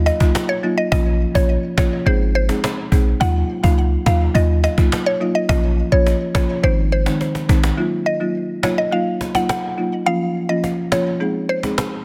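Hypnotic and tough, this dancehall excerpt at 105 BPM in 4/4 cycles through Ebmadd9, Bbm and Ab, with a dry, rustic folk marimba played with soft mallets carrying the accompaniment up front while a round, FM-style synth pluck sings a mellow melody high above, colored by chorus, phaser and digital delay. A deep, boomy 808-style bass anchors the low end until 7.7 s, and a snappy cajon with snares sits in a small room, adding a drum fill from 7.2 s into the second section at 7.8 s. The master is dense and heavily limited, keeping the hardwood tone of the marimba and the dark bass close and present.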